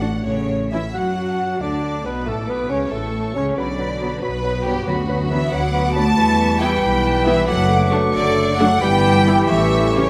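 Classical orchestral writing in a rubato 6/8 feel, restless and urgent, drawn from a longer piece and set in a moderate concert hall reverb. A clear violin section carries a smooth, even second line over the warm, soft-edged melody of a background violin section, joined at about 0.2 s by a pure, very quiet flute ensemble and around 0.9–1.0 s by a lone oboe and a clarinet, while violas, a bassoon, a very quiet French horn section and a tight trombone section fill the harmony. Clear, intense cellos and a warm double bass section anchor the bass, and timpani struck with hard mallets sound only at 0.0 and again at 4.9 s as the chords move toward a closing A7.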